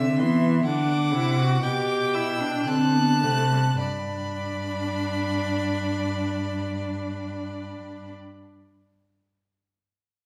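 The cello stands out most, sitting up front with soft attacks, expressive portamento and vibrato as it carries the bass line in this joyful, stately baroque-style fugue for string quartet in G major. Above it, one violin sings the high melody with a focused vibrato, while a second violin plays a smooth, even second line just beneath. The viola fills in the accompaniment with a focused but distant tone, and all four bowed players sound together from start to finish of this 8.1-second fragment of a longer piece. In 3/4 at a slow 50-65 BPM with a straight feel, the music eases back in tempo over its first 3.8 seconds as the harmony moves from C to G and then D7, settling on G as the second phrase begins. A wet recital-hall reverb places the quartet further back in the room, lending the sound a spacious, resonant glow.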